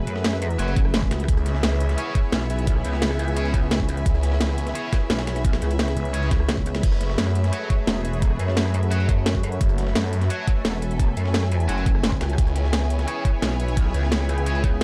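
Dark technical drum and bass with a mechanical mood, built on a knocking, up-front electronic kick, a drum and bass kit of cracking snare and metallic hats, and a very quiet, gritty breakbeat sampler-style kit, beneath a heavy, pulsing pluck wobble bass, bursts of a swirling, phased detuned saw bass from 1.3 seconds, an evolving resonant pad that pumps against the kick, a clear bowed string section with vibrato, and distorted high-gain guitar stabs roughened by 12-bit sampler grit and digital delay, all in a dry, dark mix.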